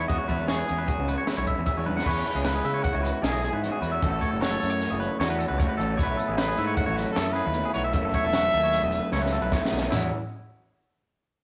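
A clear, distant trumpet sings a bright, wistful melody in 5/4 over a dark, slightly broken-up guitar through a small old amp, a twangy picked guitar playing arpeggios, fuzzy overdriven bass up front and a compact cocktail drum kit with a high-tuned snare and dark cymbals, all in a rough stone-room rehearsal sound of math rock and midwest emo, with drum fills at 1.9 seconds and from 9.1 seconds before the chords drop away at 9.9 seconds in this excerpt.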